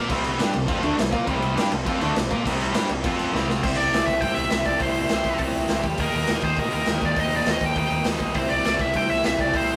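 Energetic and rowdy, this straight-ahead punk rock excerpt charges along at 203 BPM, as a biting guitar and a bright, hollow-bodied semi-hollow guitar drive the opening riff over a round fretless bass and a boomy, gritty garage drum kit captured in a stone room, until a drum fill at 3.3 seconds ushers in a dark, high-gain lead guitar melody at 3.6 seconds, just as the semi-hollow guitar drops out, all within a rough rehearsal-room sound.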